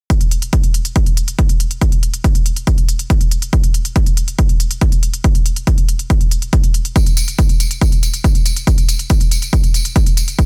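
An overdriven electronic kick drum, heavy and up front, opens this excerpt of soaring, euphoric uplifting trance at 140 BPM in a straight 4/4, sounding together from 0.1 seconds with smooth, layered electronic hi-hats carrying their own overdrive at a lower level beneath it. At 7.0 seconds a jingly acoustic tambourine with a small-room character enters and plays on to the end at 10.5 seconds. The mix is dry, dense and heavily limited, with the kick dominating.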